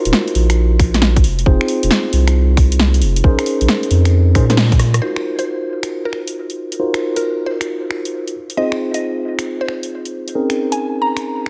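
Filtered, mellow tine electric piano stabs in Eb dorian open this soulful, moody two-step UK garage excerpt at 135 BPM with a swung 16th feel, sweeping through a low-pass filter and dub echo over Ebm69, Fm7 and Bbm11 chords, while a deep, saturated triangle sub bass and a house kit of finger snaps, hi-hat, rim click and a punchy snare sit up front with a tight, tape-toned electronic kick joining at 0.8 s, until a drum fill at 4.8 s hands over at 5.0 s, where the sub bass stops and a quieter, woody FM mallet pluck with chorus, phaser and dub echo carries the melody through an echo-heavy mix in a moderate chamber reverb.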